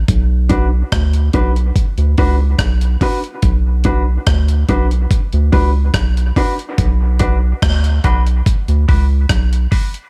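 A round, deep analog bass opens this heavy, spacious dub reggae excerpt, sitting up front and dark on a single minor chord. A gritty, compressed breakbeat-style drum kit with a thumpy kick, hi-hat and rim click joins almost at once, while a mellow, clean electric guitar enters at 0.5 seconds, high-pass filtered and trailed by dub echo, with a filter sweep from 3.4 seconds. The sound is dry and close, with little reverb around the parts.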